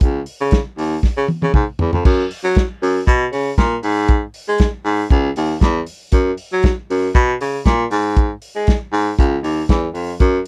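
A breathy baritone saxophone carries the bass in this short, joyful disco cut, its mellow, vibrato-tinged tone playing a low line between C#2 and G#3 and sitting up front with a roomy, pop-style character. Underneath, a soul drum kit with a small-room, acoustic sound drives a straight 118 BPM groove in 4/4, built on a punchy kick, a medium-tuned snare, hi-hat, toms and smooth, dark crash cymbals. Both parts play from the very start, running together to the close at about 10.5 seconds. A drum fill from 1.0 to 2.1 seconds leads out of the brief opening section into the longer second part, where the danceable feel settles in. The sound is dry and close, with little reverb, in the manner of a 1970s studio session, tuned slightly high at A4 = 441 Hz.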